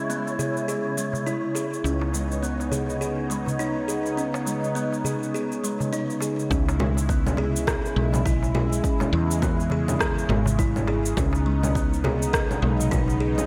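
Organic downtempo in C# minor at 103 BPM, this excerpt from a longer piece has an earthy, meditative mood, with a gentle 16th-note swing over 4/4 and a harmony that moves between C#m and Badd9. A smooth, detuned sawtooth pad with chorus and sidechain pumping holds sustained chords throughout, while a kalimba with a hollow, boxy thumb-plucked ring plays arpeggios through a digital delay. Up front, a round, dark fretless electric bass gives the low end a woody, hollow-body character. For the first 6.5 seconds an airy, breathy wind-like tuned noise texture hangs high above the mix with its own reverb and lush chorus, and at 6.5 seconds it gives way to an overdriven, deep electronic kick drum. Layered electronic cabasa, congas and rim click, overdriven and treated with gated reverb, run through the whole excerpt, joined by a soft-handed clay-shell darbuka sitting close and dry in the background. 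A lush hall reverb and bright 1980s-style digital production frame the whole track.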